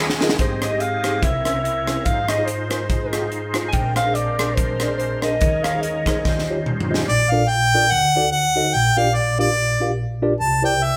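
Uptempo gospel at 144 BPM with a swung 4/4 feel, soulful and reverent, set in a stone room with a live-band ambience and taken from a longer piece. A mellow tine electric piano sits up front throughout, while a reedy tonewheel organ with key click, chorus vibrato and fast rotary speaker holds chords, a crisp fusion kit with punchy kick and high-tuned snare plays fills at the start and near 6.2 seconds, a distant subtoned alto saxophone carries the jazz-style melody, and a dark French horn section sustains chords in the background. By 7.1 seconds the organ, drums, sax and horns have fallen away, and the key lifts from Ab major to Bb major as a clear, softly attacked harmonica with light vibrato sings the melody over the electric piano.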